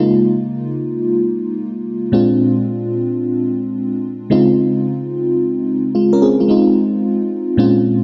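Slick and bouncy, this short R&B cut swings its sixteenths as a lone FM electric piano, layered with a soft pad, carries everything from start to finish. The keys sit up front with a lush, dreamy body, a fast attack that decays, and chorus and tremolo adding shimmer, moving through rich chords like Db69, Bb9 and Dbmaj7 before landing on Fm7. A moderate echo-chamber reverb and dark production wrap the brief passage, with a new section arriving at 4.3 seconds.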